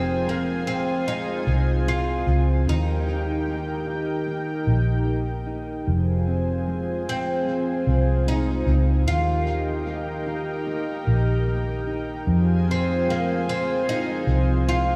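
Melancholic and hazy, this dream pop excerpt moves at an unhurried 75 BPM in F minor, drifting between Fm and Eb for its full 15 seconds. An oud carries the melody up front, its woody, plectrum-plucked double strings given a diffuse ambient delay. Beneath it, a mellow electric guitar plays dark, clean, fingered arpeggios, thickened by lush chorus and its own diffuse ambient delay. A thick, detuned sawtooth unison pad holds sustained chords with a slow attack and long release, its bright, chorused shimmer sitting above the other parts. Anchoring everything low is a vintage foam-muted electric bass, round and punchy, placed up front in the mix. The whole piece is soaked in a cathedral reverb with a 5.1-second tail, set against a small-room ambience.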